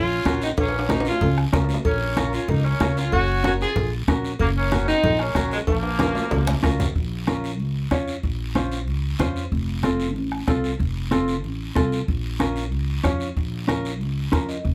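Cumbia at a driving, passionate pace, cut from a longer piece, where a bright, vibrato-laden saxophone section carries the melody until 6.6 seconds over woody pizzicato upright bass, dark clean fingered electric guitar, a soft-beatered bombo, very quiet hard-handed congas, raspy guiro and ringing cowbell and timbales that drop out at 6.9 seconds as the harmony shifts to harmonic minor, with drum fills and a closing clean guitar fill at 14.2 seconds in light reverb.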